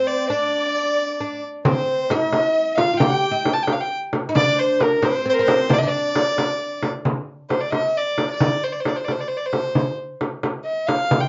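A soft-attacked, floating solo violin played sul tasto carries a longing melody up front in D dastgah shur, over a woody, double-strung oud and an expressive, vibrato-laden violin section in the background. A small, bright frame drum joins at 1.6 s to drive the hypnotic 6/8 at 89 BPM. The oud and section drop away at 6.8 s, leaving violin and drum in a modest, dark-topped small room to finish this fragment of a longer Persian modal ensemble piece.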